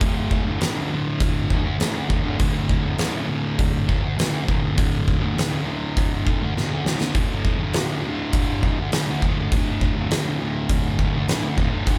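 Gritty and menacing, this garage rock excerpt from a longer piece stomps along at 101 BPM in a straight 4/4. A thick, dark fuzz guitar, distorted, picked and double-tracked, grinds out a low riff on a D5 chord, while an oversized, low-tuned acoustic drum kit pounds beside it with a boomy kick, fat snare and hi-hat in a big, pumping, saturated room sound. Both parts sit up front with light reverb, like a band playing live in one room, and the drums break into a fill at 6.6 seconds.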